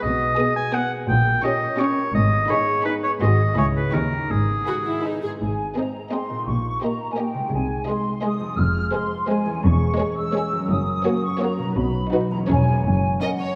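A solo oboe, clear and up front with a light vibrato, opens this playful, whimsical film cue over ringing harp arpeggios, a bowed double bass section and a dark cello section in the background, all in a brisk 3/4 at 169 BPM in G# minor. At 0.4 s the upper strings arrive: a soft, sul tasto violin section carries a floating, pure melody high above, a second, intimate violin line murmurs beneath it, and a rich viola section fills in the accompaniment. The oboe falls silent at 5.0 s, and at 5.4 s the music shifts to Ab major as a large, distant flute ensemble with crisp attack takes up a second line. The mood is magical and mischievous, with restless harmony moving through diminished and seventh chords before a turn toward F# and B near the close. A lush scoring-stage reverb with a 1.9 s tail wraps the ensemble, and the passage is cut from a longer piece.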